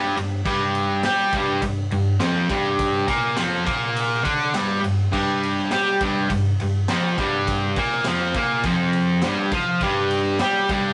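A straight 4/4 pulse at 103 BPM drives this gritty, swaggering garage rock excerpt in G minor, where an up-front, double-tracked cranked stack guitar plays a bright, overdriven, picked riff over a single Gm chord while a raw garage drum kit of crash, ride, punchy kick and medium-tuned snare sits lower in the mix with a saturated, rolled-off stone-room pump, all heard through a rough rehearsal-room recording with moderate reverb.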